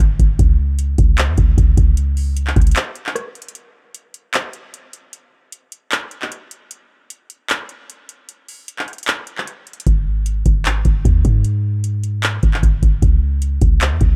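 Dry, dark and close, this eerie, brooding half-time trap excerpt at 152 BPM sets a booming analog drum machine with a deep kick, metallic hi-hats, handclaps and rim clicks, re-recorded in a small room, alongside a boomy, sine-based 808-style bass with a noise layer and mellow decay, which drops out at 2.8 seconds, leaving the drums playing alone until it returns at 9.9 seconds.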